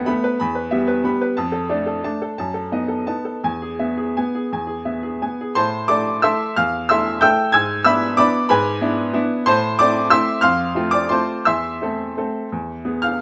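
This is a classical piano waltz in A minor, a bittersweet and wistful fragment of a longer piece, moving in 3/4 at a flexible, rubato pace between 161 and 197 BPM. A single upright piano carries everything, reaching from E2 up to G#6 with a bright, woody tone, short sustain and an up-front presence, set in a light reverb. The opening phrase hovers around the dominant, passing through Em, Dm/F and B7/F# before settling on E. At 5.6 s a new section turns home to Am, then moves through E7/G#, Am and F. It ends on Am/E and an unresolved E, as if the waltz is about to continue.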